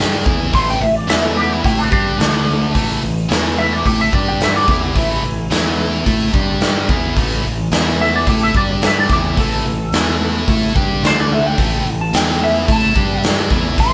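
Blues rock in a power-trio, southern rock vein, this gritty, brooding cut from a longer piece moves at 109 BPM in a straight 4/4, with a lead electric guitar solo running through its full 13.9 seconds. A tight, bright, double-tracked distorted guitar drives the riff up front over a growling, overdriven fingered bass and a huge arena drum kit with a punchy kick and medium-tuned snare. Entering at 0.5 seconds, a dark, slightly broken-up lead guitar with wah and compression carries the melody, all set in light reverb as a band playing live in one room.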